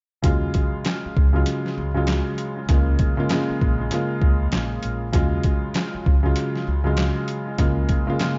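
An overdriven, pitched-down sampler-style kit with a thumpy kick, medium-tuned snare, hi-hat and handclaps sits up front in this gritty, tough boom-bap hip-hop fragment with a swung feel, alongside a worn, slightly detuned upright piano with audible action noise, cassette tape coloring and tape echo moving between Ebm11 and Db6, and a dark, woody pizzicato upright bass that stops at 7.8 seconds, set in a small, echo-heavy room with a dulled top end.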